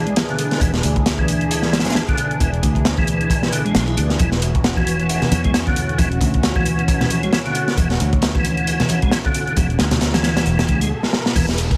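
A swung breakbeat groove at 134 BPM drives this raw, energetic clip, with a crunchy, gritty breakbeat kit up front, a tape-warm electronic hi-hat in the background, and a fingered electric bass holding a dark, round low end on an E7 chord, while a piping, lightly overdriven tonewheel organ plays a riff through a slow rotary speaker and a filter sweep, a swirling, detuned analog pad pumps underneath, very quiet congas with hard hands enter at 4.2 seconds, and a riser and downlifter arrive at 9.7 seconds ahead of a stop and drum fill, all with a heavily compressed radio sound.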